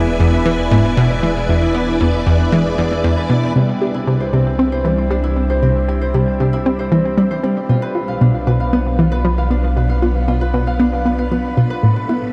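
A straight 4/4 pulse at 116 BPM drives this mysterious, cosmic stretch of sequencer-driven ambient space music, where a bright, up-front analog pluck riff carrying chorus, cassette-tape character and delay rides over a deep, round analog bass, a fingerpicked Celtic harp rings out delayed arpeggios, a lush string machine with phaser and ensemble chorus holds sustained chords and fades in from 3.6 seconds, and a very quiet bubbling stepped-filter texture appears only until 3.6 seconds, the whole dark, warm mix set in a huge, wet reverb as the harmony moves from E7 to Cadd9 to Bdim.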